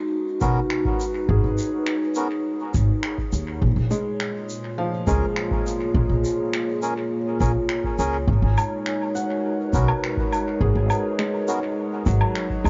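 A straight 4/4 pulse at 103 BPM from a deep, tape-warm electronic kick and a natural-sounding shaker, finger snaps and woodblock with dub echo anchors this meditative ambient dub piece in G# dorian, where a woody, pizzicato upright bass sits up front beneath a warbling, nostalgic pad holding chorused chords from 0.0 seconds, while a felt-muted upright piano plays soft, dub-echoed arpeggios with audible action noise and a reedy, breathy melodica adds echoing stabs from 0.4 to 11.6 seconds over G#m11 and A#m7, all within light reverb and small room ambience.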